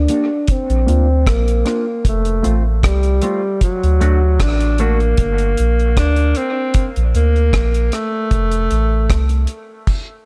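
A warm tenor saxophone with light vibrato carries the melody through a low-pass filter and dub echo over a round, mellow sub bass and a dry, tight-kicked reggae drum kit of crash, hi-hat, kick and rim click, while a clean semi-hollow electric guitar shimmers with lush chorus until 5.0 seconds in this meditative, spacious dub reggae excerpt moving through Bb, F, D and Gm under a filter sweep and light reverb.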